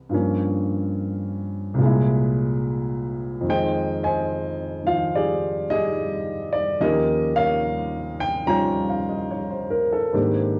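An intimate grand piano, placed up front with its action noise clearly audible, carries this short solo jazz fragment at 72 BPM in 4/4 with a swung eighth-note feel, reaching from C2 up to Bb5. The harmony moves from Gm7b5 to C7b13, then shifts at 3.5 seconds into a second passage over Fm9 and Eb9, holding a warm, swinging mood. Cassette tape coloring on the piano and a moderate spring reverb give this home recording a natural character, tuned slightly sharp at A4 = 443 Hz.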